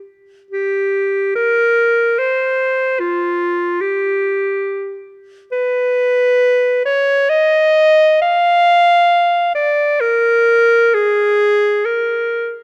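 In a free, rubato 3/4 that drifts between 56 and 76 BPM, this short, lyrical and serene classical excerpt features a bright, up-front solo clarinet singing alone from F4 to F5 for 12.6 seconds, captured by close, detailed microphones with light reverb.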